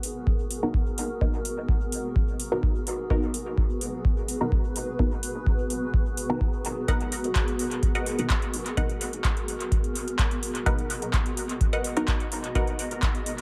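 Dub techno at 127 BPM in G# minor, this nocturnal, meditative fragment from a longer piece rests on a single G#m9 chord in a straight 4/4 pulse. An overdriven electronic kick drum sits up front, deep and analog, while a booming analog drum machine adds handclaps and metallic hi-hats, its overdriven hits trailed by dub echo and colored by a re-recording in a small room. A muted, detuned sawtooth chord stab with a sub octave arrives at 0.6 seconds, evolving under a filter sweep, with phaser, sidechain pumping and dub echo shaping its fast attack and short decay. Alongside it, a dark granular cloud pad holds blurred, cloudy sustained chords, slow to rise and long to fade, bathed in its own reverb and pumping with the beat. At 6.9 seconds a second, brighter stab enters as a higher riff, a wave-folded, plucky blend of pulse and sine tones with phaser and a cassette-tape grain. The mix is echo-heavy with light reverb.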